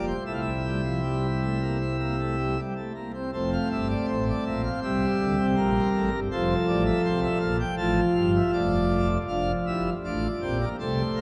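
A straight 4/4 pulse at 80 BPM carries this serious, solemn baroque-style fugue in F major, a brief fragment cut from a longer piece in which a solo pipe organ on full plenum voices four parts from a low F1 up to A5. The up-front organ sound is brilliant, with ringing mixtures and a romantic voicing, moving through C, F, C7 and back to F before the opening material returns at 9.3 s. A long cathedral reverb of 5.3 seconds surrounds it, and the dark production adds a layer of vinyl crackle.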